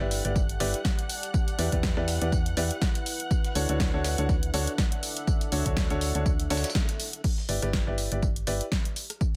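Euphoric and joyful, this piano house excerpt moves at 122 BPM in 4/4 with a light swing on the sixteenths, cycling through G6, Em7 and Dmaj7 before returning to G6 at 7.2 seconds. A clear, present grand piano carries the riff with a tape echo, while a punchy, round FM bass with a fast attack and dark decay holds down the low end, both breathing with sidechain pumping. Up front, an overdriven electronic kick joins at 0.4 seconds, backed by a punchy analog drum machine playing crash, hi-hat, rim click and snare, and a gritty, compressed sampler-style kit of hi-hat, snare and tambourine sits in the background behind high-pass filtering. Beneath them, a deep, moody pad of detuned sawtooth and sine with a sub octave swells in with a slow attack and evolves under chorus and its own reverb, and a muted, veiled chamber violin section holds distant bowed chords with vibrato until 7.3 seconds. The excerpt opens in a drop that runs to 7.2 seconds, marked by a band accent at 6.8 seconds, and the whole track sits in a digital ambience.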